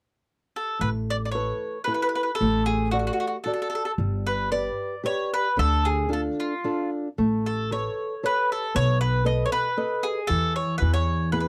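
In a rubato 3/4 at 114 BPM, this lively, romantic Italian folk serenade in A major, cut from a longer piece, opens with a round, double-strung picked mandolin carrying the melody up front from 0.6 seconds, joined at 0.8 seconds by fingerpicked flamenco guitar accompaniment and a woody, pizzicato upright bass, all captured in a dry, close 1970s-style studio sound as the chords move from Asus2 through G, Dm and B7 to a closing E.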